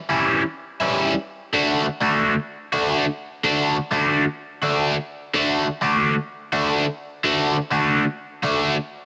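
Up front and double-tracked, a bright, overdriven electric guitar through a cranked stack plays a picked solo from 0.1 to 8.7 seconds, its phaser adding a hazy, kaleidoscopic shimmer over a straight rock feel in 4/4 as the chords move from Em6 to D in light reverb, in this brief cut from a longer piece.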